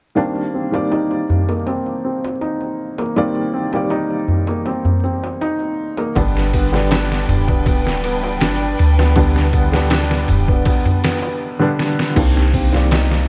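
A dark, dry recording with a layer of vinyl crackle, this melancholic, brooding trip hop excerpt moves at 80 BPM in 4/4 in C minor. From the opening, a woody, slightly detuned upright piano sits up front with short-sustained accompaniment colored by tremolo, low-pass filtering and tape echo. A second, felt-muted upright piano adds mellow, intimate arpeggios with audible action noise and a filter sweep. A deep clay-shell darbuka with a saturated, compressed skin tone rounds out the opening. At 6.2 seconds the harmony shifts from Cm7 to G as three parts arrive: a round, sine-like 808-style bass, a pitched-down, gritty sampler-style drum kit with an overdriven edge, thumpy kick, medium-tuned snare, hi-hat, ride and crash, and a clear chamber violin section holding bowed, vibrato chords in the background. The strings drop out at 11.4 seconds, and a drum fill at 11.8 seconds leads back to Cm7 for a brief closing passage.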